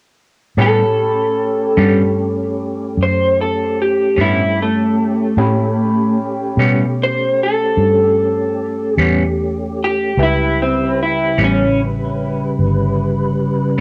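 Slow blues in 12/8 at 50 BPM, rollicking yet gritty, this cassette home recording in a snug booth sits on an A9 chord in A mixolydian. A dark, slightly broken-up electric guitar through a small old amp takes the solo from 0.6 to 11.8 seconds, compressed and up front with analog chorus and plate reverb. Beneath it, a hollow-toned semi-hollow electric guitar with harmonic tremolo, a worn, woody, slightly detuned upright piano, a clean tonewheel organ with chorus vibrato and slow rotary speaker, and a round, foam-muted fingered electric bass carry on to 13.8 seconds.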